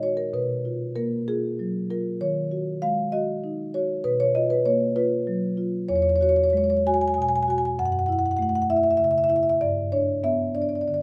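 A solo marimba played with soft mallets sits up front with a mellow, round tone, carrying this short passage from a longer contemporary classical piece across a span from E2 to G#5. The mood is hypnotic and flowing, moving at a rubato 65 BPM in 6/8 through chords such as B5 and Ebm7 before settling into F# minor from 5.9 s and passing through E69, F#m7 and G. Light reverb gives the instrument a gentle sense of space.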